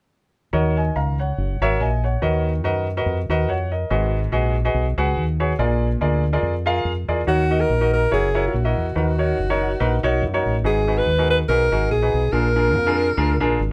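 A small room lends the band a moderate reverb, with the players heard together live in one space. This uptempo gospel passage, cut from a longer piece, carries a solemn, soulful mood over a light swing in 4/4. A clear grand piano and a fingered electric bass start together at 0.5 seconds, both up front: the piano sounds intimate and polished, its action noise audible, while the bass is dark, round and punchy with a direct, amped tone. At 7.3 seconds a mellow alto saxophone enters as the solo voice, singing the melody in a jazz style with vibrato. The harmony moves through minor seventh and dominant chords, with a major seventh chord in each half, and the same progression carries the saxophone through to the close.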